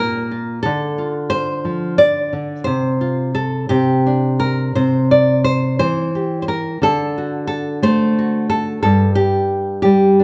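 Hopeful and warm, this short passage of folk music features a lone nylon-string guitar, fingerpicked in a classical manner and placed up front, moving freely in rubato around 59 BPM in 6/8. The harmony drifts from Bb5 through Dm and suspended C shapes to C, then D7 at 6.8 s before resting on G5 at 8.8 s, spanning G2 to D5. A moderate large-studio reverb lends the instrument a sense of the room around it.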